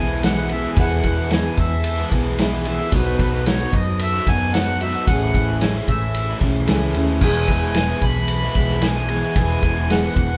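A straight 4/4 pulse at 112 BPM in E major drives this nostalgic, open-road stretch of folk rock and heartland rock, with an up-front vintage drum kit of punchy kick, dark cymbals and a pumping room sound entering at 0.2 s alongside a very quiet, jingly tambourine. A reedy accordion with slow beating carries the melody over a full-bodied dreadnought acoustic guitar with audible finger squeak, a double-tracked crunchy overdriven electric guitar riff, a round hollow-body short-scale bass, and a very quiet mellow tonewheel organ holding sustained chords through a slow rotary speaker with key click. The band sounds live in one large studio room with moderate reverb, moving from E through B and Amaj7 back to E in this short fragment cut from a longer piece.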